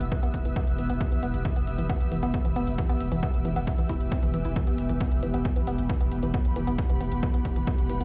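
A punchy, up-front electronic kick drives this relentless, hypnotic peak-time techno excerpt at 135 BPM in E minor, anchored by a growling, buzzy 808-style bass with tube saturation and sidechain pumping, while smooth electronic hi-hats tick above. A woody, wave-folded pluck riff enters at 0.1 seconds, colored by chorus, cassette tape and delay. Behind it, an overtone-sweeping, ring-modulated drone and an ethereal, airy pad with ensemble chorus and tremolo hold a single Em chord, all heard through a big sound system in a bare room with a dark top end.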